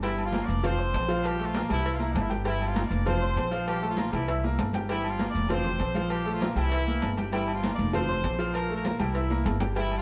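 A joyful, sunny salsa groove starts at once, with a brilliant, punchy horn section carrying the melody over bright grand piano accompaniment, a pizzicato upright bass and a bed of Latin percussion. The tempo is a brisk 197 BPM in straight 4/4, in F major, and the harmony cycles repeatedly through Gm7, F5, Bb5 and C7. The upright bass sits up front with a woody, thumpy, dark gut-string tone, while the piano sounds bright and natural alongside the horns. In the background, ringing congas played with hard hands, a tight, high-tuned cowbell and close, dry agogo bells and timbales add drive, with drum fills at 4.3 and 9.3 seconds. A moderate plate reverb places the band further back in the room, and this short excerpt, cut from a longer piece, runs about 10 seconds.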